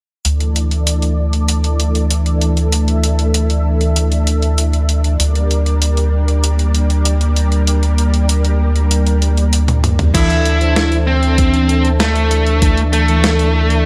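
A silky, detuned analog string pad with ensemble chorus holds Dsus2 and Gm/D chords over a clean, sampler-style 12-bit drum machine and a deep, round square-wave bass on D2 in this cinematic, nocturnal synthwave excerpt at 97 BPM, and after a drum fill a bluesy, distorted lead guitar with tape echo, full-bodied chorused synth brass stabs and an overdriven, knocking electronic kick arrive at 10.1 seconds, all set in a digital ambience marked by lossy compression artefacts.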